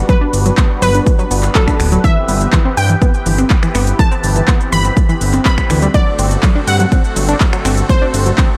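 Uplifting and expansive, this short excerpt of progressive house at 123 BPM moves through Gmaj7, Cmaj7/G and D7/G, with a punchy, overdriven electronic kick up front, crisp hats, cabasa, finger snaps, handclaps and ride cymbal from a tape-warm big-room dance kit, and a fat, thick sawtooth bass with a filter sweep, pumping to the sidechain. Above them an evolving supersaw swell holds soft-attack chords, a tight, driving sequenced synth runs arpeggios through chorus, phaser and delay, and a lush, bright unison pluck carries the melody with delay. A soft, pure FM bell traces a gentle second line in the background, and the whole sits in a roomy digital ambience.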